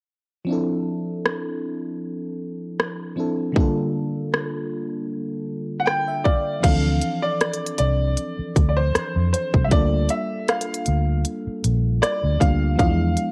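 Contemporary R&B with a late-night, longing mood, moving at an unhurried pace with a light swing on the sixteenths. A glassy FM electric piano with a bell-like attack and chorus opens the piece alone, laying down full-bodied Dm9 and Gm9/D chords, and adds a fill just before the second section. A trap drum kit enters at 1.3 seconds with a hard-clipped kick, crisp hats, rim clicks and crash cymbal, sounding produced and tape-warm. At 5.8 seconds a clear, worn grand piano takes the melody in a high register, and at 6.6 seconds a dark, round, foam-muted electric bass joins low and up front as the chords cycle again toward a closing E7b9. Light reverb and a cassette-tape home-recording character colour the sound of this section cut from a longer piece.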